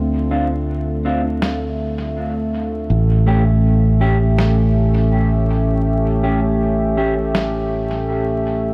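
A fingered electric bass sits up front, direct and amped, beneath a smooth, warbling analog pad with chorus, while dark, clean electric guitar stabs carry dub echo from 0.3 seconds and a muffled, pitched-down electronic snare with studio reverb and dub echo enters at 1.4 seconds, all in a hazy, deep ambient dub excerpt at 81 BPM moving from Dm7 to A7 over light reverb and vinyl crackle.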